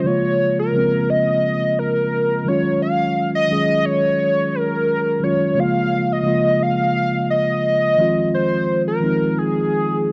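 This short excerpt has a dark, warm production with light reverb, and both parts sit up front. It is a sultry, introspective R&B groove in Bb minor at 87 BPM in 4/4, with a gentle 16th-note swing. A hollow, woody square-wave lead carries the melody between Ab4 and F5, its fast attack and sustained tone colored by sawtooth edge, ring modulation, chorus and vibrato. Beneath it, a mellow, clean tine electric piano plays the accompaniment from Db3 to Ab4. The harmony moves from Bbm7 to Ebm11 at 2.5 seconds, back to Bbm7, and settles on Fm7 at 8.0 seconds. Both parts play together for the whole 10.1 seconds.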